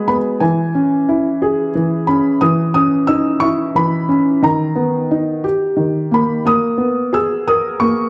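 A dark, intimate recording set in a moderate recital-hall reverb opens on a lone felt-muted upright piano, its boxy, mellow tone sitting up front with the soft clatter of its action clearly audible. This dreamy, wistful children's lullaby in a gentle 6/8 touches a high E6 at 0.4 seconds, then drifts through C#madd9/E, Bmaj7/D# and D# before settling on G#madd9 at 6.5 seconds. It is a brief fragment cut from a longer piece.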